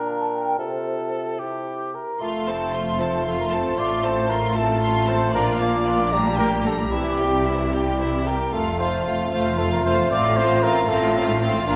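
A spirited, cheerful classical-period movement in a quick 6/8 at 76 BPM (dotted quarters) in F major opens with an up-front mellow cor anglais, a clear, distant clarinet, a bassoon with light vibrato and airy, hollow flutes in the background, mellow vintage-toned trumpet stabs entering at 1.4 seconds, before the full orchestra arrives at 2.2 seconds: a smooth, even chamber violin section carries the melody over focused background violins and violas, roomy French horn chords and a distant, expressive cello section with double basses, all in the generous reverb of a scoring stage.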